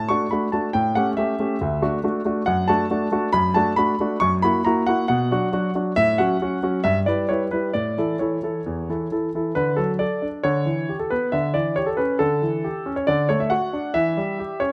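A clear, intimate grand piano opens this graceful, elegant classical-period sonatina in D major, playing solo at 137 BPM in a straight 4/4 and ranging from D2 up to C#6. Close, detailed microphones keep its polished tone present and up front, with audible action noise and long sustain set in a moderate recital hall reverb. The opening section runs to 9.6 seconds before a second section takes over, and this fragment of a longer piece breaks off at 14.7 seconds on a C#dim/E chord.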